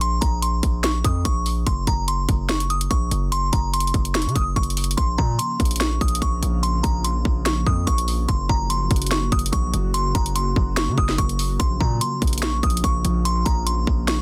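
Dark, melancholic half-time trap hip hop at 145 BPM in Bb minor, cut from a longer piece, where a delicate, tinkling FM tine bell with chorus and delay carries the melody over an up-front trap kit of hard-clipped kick, sharp snare and bright overdriven hats and a heavy, saturated 808-style bass with an aggressive distorted edge, while a glassy, ethereal FM pad with ensemble chorus and built-in reverb enters at 5.0 s to hold mellow sustained chords in a dense, heavily limited, dry mix.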